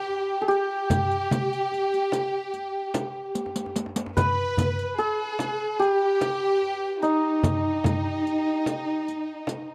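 In a straight 4/4 pulse, this passionate Persian modal ensemble piece opens with a shimmering, ringing hammered santur carrying the melody up front, joined by a focused, bowed violin section with vibrato playing a second line in the same register. The tombak enters almost at once with a tight, warm tone, followed by the bright jingles of the riq at 0.5 seconds and a small frame drum at 0.9 seconds, and a drum fill arrives at 3.3 seconds. The sound is dry and close, in the manner of a 1970s studio session, and this short piece is cut from a longer work.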